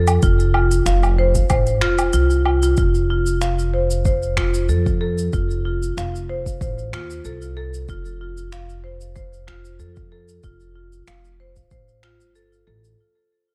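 A marimba struck with medium hard mallets sits up front, its rosewood bars giving smooth, dark arpeggios between F4 and F5 that trail through a delay. This is peaceful, earthy organic downtempo in F major at 94 BPM in 4/4, with a gentle 16th-note swing. Beneath it, a pizzicato upright bass with steel strings plays a woody line from F1 to F2, also up front and pumping with sidechain compression, over a single F chord. An electronic drum kit of cabasa, finger snaps, woodblock and crisp hi-hats carries an overdriven edge. A deep, layered, tape-warm electronic kick runs from 0.2 to 11.8 seconds, and both drum parts sound re-recorded in a small room. Light reverb and digital ambience frame the dark production, and this excerpt fades out across its full 13.0 seconds.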